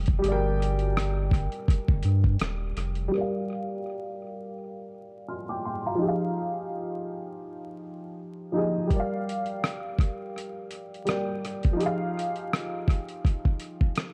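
A woody, slightly detuned upright piano, muffled by a low-pass filter and given a filter sweep from 3.1 seconds, carries this nostalgic, reflective lo-fi hip hop excerpt at 83 BPM in lightly swung 4/4, moving between Gm7 and Fm7 in G phrygian, while a deep, thick, saturated sub bass and a gritty, overdriven sampler-style drum kit with a thumpy kick, hi-hat and rim click, tape echo and 12-bit crunch enter within the opening moments, both stopping at that same point before the drums return at 8.9 seconds, with the mix sitting in light reverb, heavy echo and vinyl crackle.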